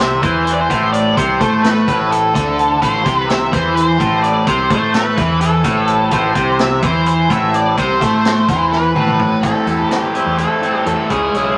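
A moderate studio reverb surrounds this dark, trippy psychedelic rock cut from a longer piece, which moves in a straight 7/8 over an A minor chord. An up-front, double-tracked crunchy guitar drives the riff through a phaser, backed by a growling, overdriven picked bass and a mid-forward vintage acoustic drum kit with a punchy kick, medium-tuned snare and rolled-off top. A dusky octave-fuzz lead guitar carries the melody above a very quiet, buzzy combo organ holding sustained chords with light vibrato, and a drum fill at 8.7 s leads into a new section at 9.4 s.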